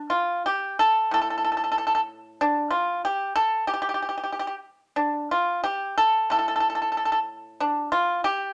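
A solo pipa, played with fingerpicks, sits up front with a dry, percussive attack and a warm acoustic body, ranging from A2 to A4 across this brief 8.5-second excerpt cut from a longer Chinese traditional piece. The mood is longing and contemplative, moving at around 93 BPM in 2/4 with uneven, rubato beats that let the phrases breathe freely. Light reverb surrounds the instrument, which is tuned slightly high at A4 = 443 Hz.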